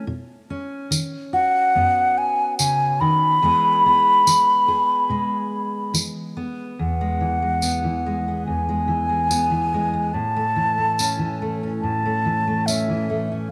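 Acoustic folk in E major at a relaxed 71 BPM in straight 4/4, this pastoral, hopeful passage cut from a longer piece opens with a full-bodied fingerpicked steel-string guitar, joined at 0.9 seconds by a jingly tambourine and at 1.3 seconds by a wooden flute carrying the melody. The flute sits most prominently, its pure, expressive tone marked by vibrato, tongued notes and lifted highs, while the guitar moves through Badd9, E and A beneath it. A moderate plate reverb lends the ensemble a gentle sense of space as the music passes from its opening section into a second one at 6.8 seconds.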